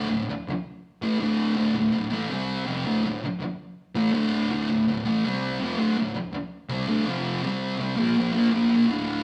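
Brisk, straight 4/4 rock carries this swaggering, raw excerpt, where a lone thick fuzz guitar, picked, double-tracked and up front, grinds through power chords from D5 to C5 and on to F5 and Bb5 in a rough rehearsal-room recording with tube saturation and the wet reverb of a stone room.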